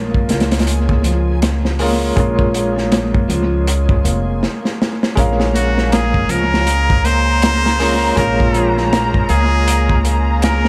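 A swung 80 BPM breakbeat in 4/4 drives this dark, smoky trip hop excerpt in Bb minor, built on a Bbm7 chord. The crunchy drum kit sits up front with a tight kick, a medium-tuned snare and hi-hat, its gritty, saturated sound rolled off at the top and touched by analog delay, while a woody pizzicato upright bass with tube saturation anchors the low end beside it. A felt-muted upright piano plays soft, intimate accompaniment with audible action noise, tremolo and tape echo. Beneath it, a slightly broken-up electric guitar picks compressed arpeggios in the background with its own tape echo, and a very quiet reversed, granular texture drifts through the opening with a dreamy, detuned shimmer. After a drum fill and stop at 4.4 seconds, a distant studio violin section enters at 5.2 seconds with lush, bowed sul tasto chords. At 5.6 seconds a nasal, brilliant trumpet with a straight mute takes the melody up front, singing with vibrato through dub echo in an echo-heavy mix with light small-room ambience.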